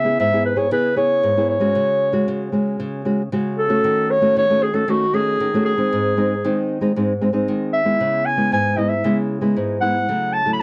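A roomy, classical-style clarinet carries the melody up front throughout this playful, joyful samba fragment in C# minor at 115 BPM, its tone sounding a touch distant. Thumb-plucked nylon-string guitar supplies acoustic, warm accompaniment alongside it from 0.0 to 10.6 seconds, moving through C#m7, F#sus2/C#, D#m7b5 and G# before returning to C#m7. The sound is a dry, close 1970s-style studio recording with light reverb, cut from a longer piece.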